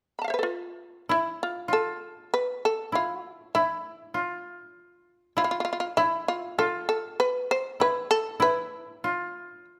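Japanese traditional music, austere and still, moves in a slow, rubato 2/4 at 49 BPM with a tuning of A4 = 444 Hz, as a buzzing, percussive, plectrum-plucked shamisen carries the melody up front from 0.2 seconds, joined at 1.1 seconds by a mellow, woody koto played with fingerpicks on a narrow second line, all under light reverb in this brief passage cut from a longer piece.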